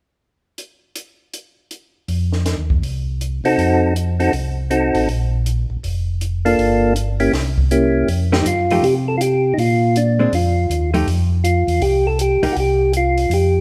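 Heard live in one room under a moderate large studio reverb, this soulful, bluesy soul jazz organ trio, cut from a longer piece, swings at 160 BPM in 4/4 in F mixolydian: a compact cocktail drum kit with a dry, high-tuned snare and punchy kick starts at 0.6 s, an up-front, round, dark tonewheel organ bass with key click and slow rotary speaker enters at 2.1 s, a mellow, clean percussive tonewheel organ melody with third harmonic percussion sits up front through the same slow rotary effect, and a picked, compressed hollow-body electric jazz guitar adds accompaniment from 8.3 s over chords such as F7b9, Gm9 and C7b9.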